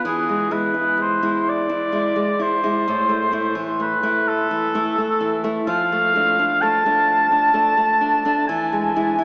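Heard through a small speaker, the recording sits in a lingering cathedral reverb, as if captured in a church or concert hall. It is a brief, melancholic and elegiac passage from a longer romantic duo for oboe and classical guitar, moving in 6/8 with free rubato. The mellow oboe carries the melody from start to finish, its soft attack and light vibrato giving a distant, roomy voice in classical style that still sits up front and above the guitar in level. Beneath it, the nylon-string guitar is fingerpicked with fresh-stringed brightness, an occasional finger squeak adding acoustic intimacy to its classical accompaniment. The harmony moves from E7 through Am and Dm/F before arriving on E at 8.5 seconds, leaving the phrase suspended as the passage ends at 9.2 seconds.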